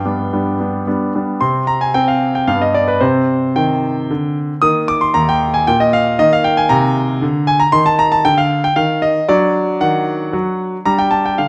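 Classical-period piano sonatina in 3/4 at 114 BPM, cut from a longer piece, where a bright, brilliant concert grand plays solo from deep bass to high treble with a restless, dramatic rubato feel, its chords moving from G through C minor and F13 to D before settling on G5 at 10.9 seconds, captured up front by close, detailed microphones in a moderate recital hall reverb.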